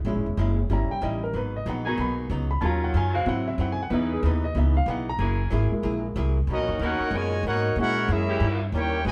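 An intimate grand piano with audible action noise takes an up-front solo over the opening of this joyful, energetic swing jazz cut in B major at 187 BPM, backed by a woody, thumpy pizzicato upright bass, a dark, clean, compressed hollow-body archtop guitar, and a clear saxophone section holding sustained chords from 1.8 s, before a warm, tight trumpet section with light vibrato takes the melody at 6.5 s alongside a dark, soft-attacked vintage trombone section on a second line, all in a live room with moderate reverb.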